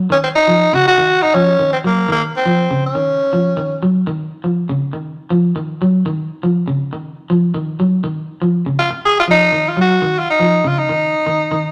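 Opening on an up-front electric guitar at the edge of break-up, twangy and picked as it arpeggiates between Db3 and Gb3, this driving, intense afrobeat excerpt at 121 BPM in Eb dorian brings in a raspy, gritty tenor saxophone carrying a bright, vibrato-laden pop-style solo melody from 0.1 s, which drops out at 3.8 s and returns at 8.8 s over a cycle of Ebsus2 and Ebm9 or Ebmadd9 chords, all in a rough rehearsal-room recording with moderate stone room reverb.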